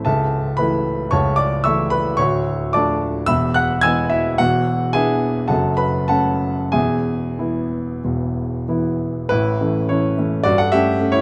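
A baby grand piano plays alone from the start, polished and up front, in a passionate, warm romantic character piece with a flexible rubato feel in four. Its close, detailed tone has a short sustain set in a moderate recital hall reverb, and the harmony passes through D minor, E and F sharp minor. A new section arrives at 9.3 seconds before the clip, cut from a longer piece, ends at 11.2 seconds.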